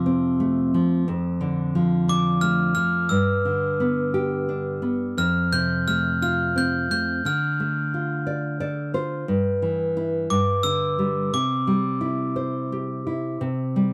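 A dry, close recording with a small room ambience gives this short lullaby for children the intimate feel of a 1970s studio. Gentle and innocent in mood, it moves in a lilting 6/8 with a straight feel. A fingerpicked nylon-string guitar sits up front from the first moment, its classical, acoustic tone bright and clear as it carries the accompaniment through chords such as F, G, Dm and a closing C. At 2.1 seconds a glockenspiel played with brass mallets takes up the melody high above, its metallic, bell-like notes ringing and sparkling, a little further back than the guitar. The guitar adds a brief fill at 8.3 seconds before the passage settles onto C, and in this fragment of a longer piece the glockenspiel's chimes end shortly before the guitar's final notes.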